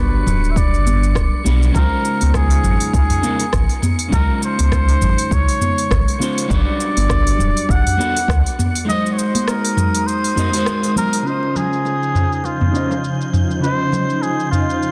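A veiled, cup-muted jazz trumpet sings a soft, scooped solo with vibrato through tape echo and shimmer reverb in this smooth, relaxed sunset chillout excerpt, over dark, slightly broken-up fingered electric guitar, a round sine sub bass and punchy layered electronic kick that both drop out at 8.4 seconds, a deep house kit with smooth hats, bright soft-handed congas and bongos in the background, a breathy wind-like noise layer, and an ethereal, detuned shimmering pad that enters at 12.1 seconds under a filter sweep, all in a dense, heavily limited master.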